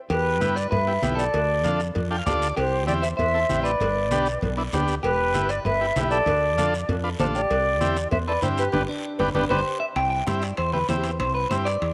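An airy concert flute carries the melody of this joyful, danceable cumbia, its soft attack and expressive vibrato sitting over a brisk 195 BPM in straight 4/4 and C major until it drops out at 9.6 seconds. Beneath it, a round, punchy fretless bass with a woody, hollow-body tone sits up front, while a clean, picked electric guitar plays a second line and a buzzy, overdriven vintage combo organ with light vibrato fills out the accompaniment, adding a short fill at 2.0 seconds. Thick-skinned, low-tuned congas and ringing metal-shell cowbell and timbales with a compressed, saturated edge sit in the background, while a raspy guiro is heard close and dry. The harmony cycles through Em, Dm, C and G before a band accent and drum fill lead into a short new section at 10.0 seconds, where the guitar takes a solo over C. A moderate plate reverb gives the mix a sense of space, and the recording is cut from a longer piece.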